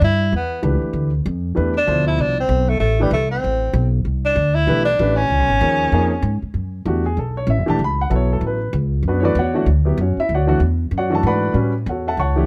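A warm tenor saxophone opens this cool, spiritual modal jazz excerpt with a vibrato-laden, soft-attacked solo line, sounding distant and roomy under plate reverb before it drops out at 6.4 s. Beneath it, a woody, bright pizzicato upright bass on steel strings carries the swung 4/4 pulse throughout. A natural-sounding baby grand piano with short sustain enters at 0.6 s to comp through to the end at 12.5 s, the whole set in light reverb.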